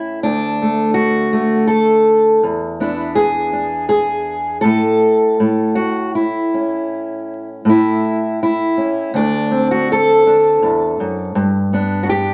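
A fingerpicked steel-string acoustic guitar plays alone from the first moment, a gentle, warm folk piece in D major at 81 BPM in 3/4, taken with a loose rubato feel. Sitting up front with a concert-like presence, it moves from D through E7, a brief chordless moment, then A, D7 and G across this 12.3-second excerpt. A moderate studio reverb surrounds the guitar, and a vinyl crackle runs through the recording.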